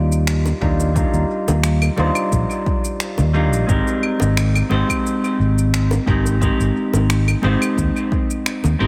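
A clean, picked semi-hollow electric guitar and a fingered electric bass open this sunny, smooth sunset chillout excerpt together. The guitar sits up front with a filter sweep across its low-pass filter and a dub echo trailing its chords. Beneath it, the round, dark bass holds the low end, also up front. At 88 BPM in a straight 4/4, with tuning set to A4 = 436 Hz, the harmony moves from Ebmaj9 to Abmaj9 at 3.7 seconds. A layered electronic kit of shaker, finger snaps and claves, overdriven and fed through analog delay, enters at 0.1 seconds, and a punchy overdriven electronic kick drum arrives at 0.6 seconds. Tight, high-tuned bongos played with soft hands sit in the background with their own analog delay, and the whole is set in an echo-heavy mix with light reverb and a small room ambience.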